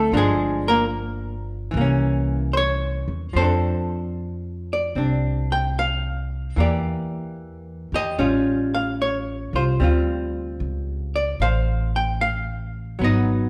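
A dark, clean archtop guitar and a woody, thumpy pizzicato upright bass open this late-night, romantic jazz ballad together, both up front at a swung 74 BPM in F major, moving from Gm7 and C7b9 to F6 before a shadowed turn through Em7b5 and A7alt to Dm7, all bathed in the lush reverb of a large studio where the duo plays live in one room, in a fragment cut from a longer piece.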